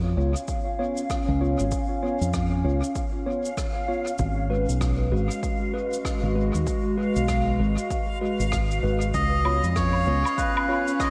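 Ambient dub with a meditative, hazy mood, moving in 4/4 with a swung sixteenth-note feel, cut from a longer piece. A warbling, nostalgic tape-like pad holds sustained chords drifting between C#7 and G#m7, its detuned, lo-fi tone thickened by chorus and its own reverb. Beneath it, a round, dark fingered electric bass sits up front with tube saturation, while a mellow tine electric piano places clean stabs treated with analog chorus and dub echo. A punchy, layered electronic kick anchors the groove alongside a brushed cabasa, rim click and woodblock kit with a rolled-off top, which is sent into dub echo, and from 2.1 seconds a reversed, granular texture swells in softly on a single bright high note. At 9.1 seconds a reedy, breathy melodica enters up front with its own dub echo, all set within a dreamy mix soaked in lush hall reverb.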